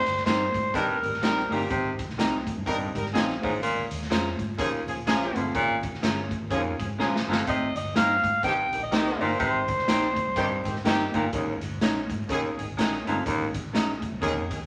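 Vinyl crackle and moderate studio reverb frame this uptempo, uplifting 1960s-style soul excerpt at 125 BPM, swung and resting on a Cm7 chord. A raw, saturated garage drum kit sits up front with a punchy kick and a fill at 7.0 seconds. A dark, foam-muted fingered electric bass, a worn, slightly detuned upright piano in the background, clean picked stabs from a semi-hollow electric guitar and a distant, roomy horn section carry the groove beneath a breathy, whispered baritone saxophone riff, while a raspy, growling alto saxophone takes the melody up front, heard briefly at the start and again from 7.5 seconds.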